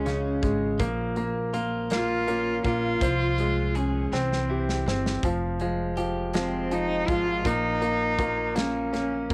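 In a slow 6/8 at 54 BPM, this aching, melancholic pop ballad in F minor sets a dark, reedy bowed cello melody with light vibrato up front over a brilliant, short-sustained concert grand piano, twangy direct-recorded clean electric guitar arpeggios in the background, woody pizzicato upright bass and an airy studio drum kit that enters at 0.1 s and plays a fill from 4.1 to 5.2 s, all captured as a home cassette recording with light reverb and the cello carrying tape echo.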